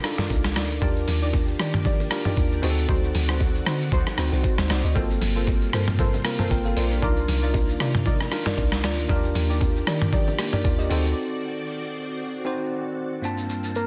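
A deep, round log drum bass anchors this late-night amapiano groove at 116 BPM in G minor, its percussive, dark tone sitting beside a gritty, thumpy sampler-style drum kit with an overdriven snare, up front over a swung 16th feel. A bell-like tine electric piano carries the accompaniment through Cm11, Ebmaj7, D7b9 and Gm11 changes, while shimmering vintage string-machine violins hold soft chords in the background and a warbling chord stab with chorus and tape echo adds mellow colour, joined by very quiet, close bongos and congas. A barely audible downlifter opens the excerpt, a break arrives at 11.2 seconds, and an octave-layered synth lead touches a single note at 13.8 seconds, all in a dense, heavily limited modern master with digital ambience.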